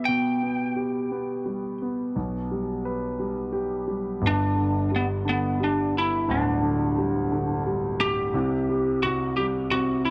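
Soft reverb and a small-room ambience with a rolled-off top end frame this tender, swaying pop fragment in 6/8 at 58 BPM in G major, where a lightly driven electric lead guitar, bright, twangy, slightly broken-up, picked and compressed, carries the melody over a warm concert grand piano with deep bass and long sustain, both parts sitting up front as the harmony moves from a rootless Em/B to G5 at 4.2 seconds and C5 at 8.3 seconds.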